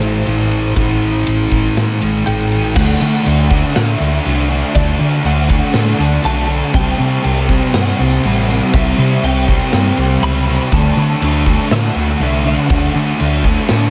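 Wistful and blissful, this short shoegaze and dream pop cut from a longer rock piece pairs an up-front, double-tracked dark fuzz guitar riff with a round, hollow-body fingered bass and a big acoustic drum kit of punchy kick, medium-tuned snare and bright crash and ride cymbals, while a clean, compressed electric guitar melody sits in the background under ensemble chorus and delay, the whole dreamy mix soaked in a huge ambient reverb as the chords move from Am to D around 2.8 seconds.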